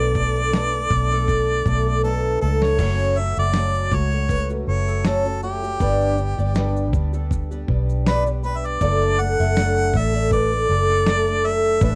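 A lightly swung 16th-note groove at 80 BPM in 4/4 drives this sunny, heartfelt acoustic pop excerpt in D major. A gritty, overdriven sampler-style soul kit of thumpy kick, snare, shaker and crash plays a fill from 2.0 to 2.8 seconds, under a round, foam-muted electric bass sitting up front, while a boxy, shimmering fingerpicked twelve-string acoustic guitar with old strings carries the chords from Bm7 through F#m and G to D/F#, and a small nylon-string guitar adds background arpeggios from 0.4 seconds. Over the top, a clear, close-miked harmonica sings the lead with vibrato and scooped notes, in a dry, close 1970s-style studio sound.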